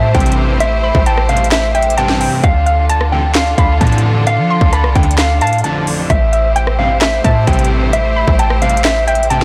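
Brooding and hard-hitting, this trap excerpt in A minor moves at 131 BPM with a half-time feel, cycling from Am7 to Dm and back, over a boomy 808-style bass and an electronic drum kit with a hard-clipped kick, sharp snare, metallic hats, handclaps and rim clicks, both up front. A clean, fingered electric guitar carries the melody through digital delay, joined by a soft, round pluck in the background with chorus and delay, while a distant, lush string section holds bowed chords and a fat, detuned sawtooth polysynth punches out stabs. A barely audible impact opens the first 0.6 seconds, and the whole mix sits in light reverb with a blown-out, overdriven sheen.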